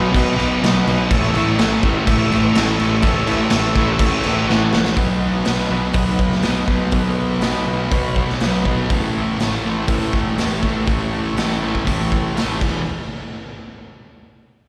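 Garage rock at 122 BPM with a raw, rowdy mood, heard as a live gig through the venue's PA in a recital-hall reverb, where a dark, double-tracked fuzz guitar riff sits up front over punchy, gritty drums with a medium-tuned snare and pumping room sound, a growly overdriven fingered bass and a reedy vintage combo organ holding sustained chords with light vibrato in the background, moving through B and A chords with a drum fill at 4.5 seconds before landing on E at 12.6 seconds.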